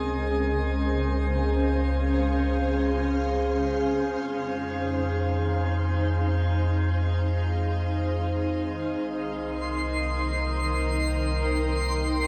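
Ambient and serene yet melancholic, this fragment drifts through Dbmaj7, Fm7 and Cm7 on a dark, cloudy granular pad with a moving notch, held up front over a deep, round warm sub bass, while a bright, twinkling granular texture with an octave-up shimmer enters at 9.6 seconds, all bathed in a long, wet shimmer reverb.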